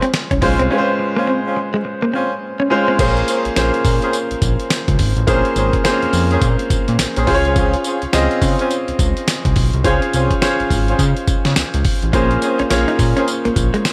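A clear, up-front grand piano, a gritty sampler-style drum kit with a thumpy kick and fat snare, mellow jazz-style horn stabs with tape echo set in the background, and a clean, direct-recorded electric guitar riff bathed in lush chorus open this confident, bouncy new jack swing R&B excerpt in Bb minor at 105 BPM with swung 16ths; a thick, detuned analog bass joins at 0.3 seconds, and the guitar drops out at 3.0 seconds before returning at 12.1 seconds, all over Dbmaj7 and Bbm9 chords in a light digital ambience.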